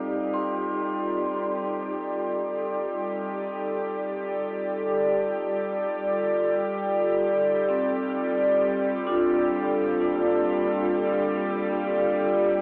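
Reflective and melancholic, this free-time ambient excerpt, tuned to A4 = 444 Hz, drifts on a warbling, detuned tape-like pad holding sustained chords up front, moving from F13 to Gm9 at 8.6 seconds under chorus, cassette tape and shimmer reverb. A metallic, ringing, boxy vibraphone played with medium mallets and its motor off traces arpeggios through analog delay, while a tense, string-like bowed drone with vibrato sits quietly beneath both. The whole is captured as a lo-fi home cassette recording with a telephone-like character in a wet studio reverb.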